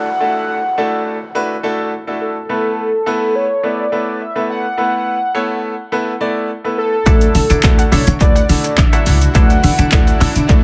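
A velvety, full-bodied synth lead carries the melody with chorus and tape echo in this carefree, summery dance-pop excerpt, backed by a clear, polished grand piano with sidechain pumping and a faint electronic downlifter at the opening. At 7.1 seconds a punchy analog drum machine with kick, handclaps, hi-hat and shaker arrives up front alongside a woody, thumpy pizzicato upright bass, while a twangy clean electric guitar riff and a bright, detuned unison pluck arpeggio sit in the background. A very quiet, blurred granular pad adds sustained chords from 9.0 seconds, all set in an echo-heavy mix with light reverb and digital ambience.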